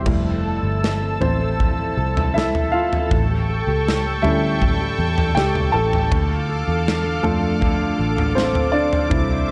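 A hopeful, emotional pop ballad at 80 BPM, cut from a longer piece, where an intimate baby grand piano with audible action noise carries the lead over fingerpicked arpeggios from a dark steel-string acoustic guitar with finger squeak in the background, a thick, warbling detuned sawtooth pad with chorus sustaining chords above, a round, foam-muted electric bass, and a punchy studio drum kit with kick, medium-tuned snare, toms and splash cymbal in a pumping room, all moving through Fmaj7, A7 and Dm in light reverb.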